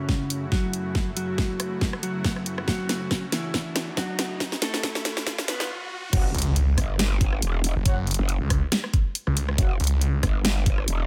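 This heavy, aggressive wobble dubstep excerpt opens with a dark, clean electric guitar melody carrying tape echo, set over a lush supersaw pad whose sustained chords pump with sidechain in the background. An up-front electronic drum kit and a knocking kick join almost at once, and a drum fill, filter sweep and very quiet electronic riser and swell build the tension in a half-time, swung feel. The guitar and pad stop at 5.7 seconds, and a brief stop gives way to the drop at 6.1 seconds, marked by a quiet impact. There, a wobbling, chorused growl bass with a formant filter and a snarling, detuned sawtooth bass with distortion and overdrive surge to the front, backed by the huge snare and crash cymbal. Soft brass ensemble stabs with light vibrato and tape echo sit far behind this onslaught, and the whole mix carries light digital reverb.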